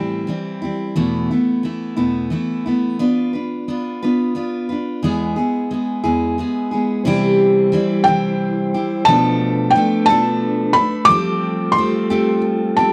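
A felt-muted upright piano carries the melody high in its register from 8.0 seconds, its thin, intimate tone sitting up front with a short sustain and the natural clicks of its action audible. This is a wistful, reflective acoustic folk piece for a small group, moving slowly at 59 BPM in a straight 6/8. A picked steel-string jumbo guitar provides full-bodied accompaniment throughout, also close up front, moving from Am7 through Esus4, Bdim and E before shifting to C, Bm7b5 and Fadd9 in the second section. A soft, flute-like tonewheel organ joins at 7.0 seconds with sustained chords in the background, its clean sound gently colored by a slow rotary speaker. The dry, close studio sound recalls a 1970s recording, touched with light reverb, and the passage is cut from a longer piece.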